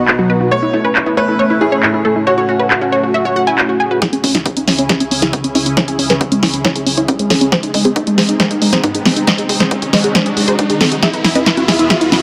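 Opening on a lush, detuned unison pluck melody with sidechain pumping and digital delay, this soaring, driving uplifting trance piece at 137 BPM in C# minor layers a brilliant grand piano second line that stops at 3.9 seconds, a thick sustained sawtooth pad with chorus and phaser, round analog pluck arpeggios, and a punchy, dry analog drum machine of congas, handclaps, hi-hat and low-passed snare up front, while a tape-warm electronic kick enters in the background at 4.0 seconds as the build-up begins and a riser joins at 6.8 seconds, set in light digital reverb.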